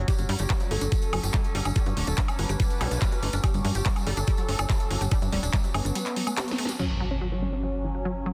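An overdriven, knocking electronic kick drives this alien, intense psychedelic trance excerpt at 143 BPM in 4/4, alongside a tight sawtooth sequencer bass with ring modulation that stops at 5.9 s, a filtered techno kit with cracking snare, metallic hats, handclaps, crash and woodblock, jingly tambourine, a thick detuned unison lead with phaser, vibrato and dub echo, a bright warbling unison pluck riff in the background, a resonant overtone-sweeping drone with chorus, a very quiet blurred granular cloud pad, and a filter sweep across the synth arpeggio, before a drum fill and band accent land on an up-front impact at 6.8 s in a dense, heavily limited mix.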